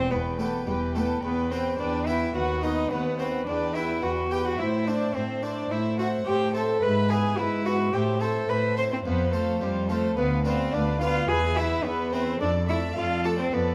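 This driving, dramatic baroque-style concerto movement in E minor opens with a solo cello carrying the melody up front, its single bowed voice rich and reedy with light vibrato and a gut-string, period-style tone. Sounding with it from the start are a chamber violin section on a second line in the background and a warm cello section holding the low bass up front. From 0.1 seconds a second violin section adds a high, smooth-topped melodic strand in the background, while a dark, distant viola section and a dry, full-bodied harpsichord plucking on two sets of strings fill in the accompaniment. At a steady 107 BPM in straight 4/4, the harmony moves from E minor through A minor and F before settling on a D minor chord at 12.4 seconds. The close, detailed microphones sit within a moderate recital-hall reverb, and the passage is cut from a longer piece, ending at 13.7 seconds.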